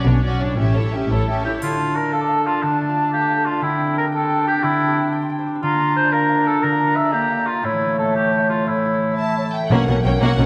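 A lush string section with a ringing harp opens this swashbuckling, adventurous 6/8 film-score excerpt in D minor at 119 BPM. A warm, up-front oboe enters at 1.1 seconds, joined at 1.6 seconds by a clear clarinet and an airy silver flute, all carrying second lines over the harp's arpeggios (with a faint triangle in the background). The violins return at 9.2 seconds, and at 9.7 seconds the rest of the strings come back with rich cellos and basses, along with a mellow, very quiet French horn section and round, soft-mallet timpani, all set in a wet concert-hall reverb.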